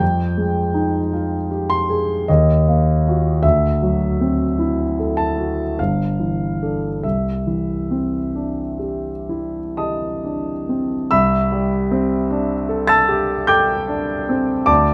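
This impressionist solo piano piece moves in a luminous, dreamy mood, cut from a longer work. A single concert grand plays throughout, in an unhurried triple metre with a freely breathing rubato. Its tone is clear and natural, with a deep bass reaching down to G1, upper notes climbing to A6, and a long sustain that lets each chord ring. The harmony drifts through colorful extended chords, from Fm9 through Ebmadd9, D9 and Gsus2 before settling on Cadd9 at 7.0 seconds. The opening idea returns at 11.1 seconds over a C69. The piano sits up front, captured by close, detailed microphones in a dry room, so every note is heard intimately.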